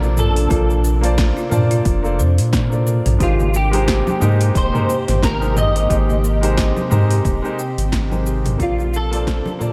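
A clean, picked electric guitar melody opens this sunny, relaxed sunset chillout excerpt over polished baby grand piano, an ethereal chorused pad in the background, a round, up-front analog bass with tube saturation and an overdriven deep house kit of punchy snare and metallic hats, soon joined by woody kalimba arpeggios at 0.2 seconds, a deep overdriven electronic kick at 0.5 seconds and soft-handed congas from 3.4 seconds, before the swung groove fades out from 6.8 seconds in light digital ambience.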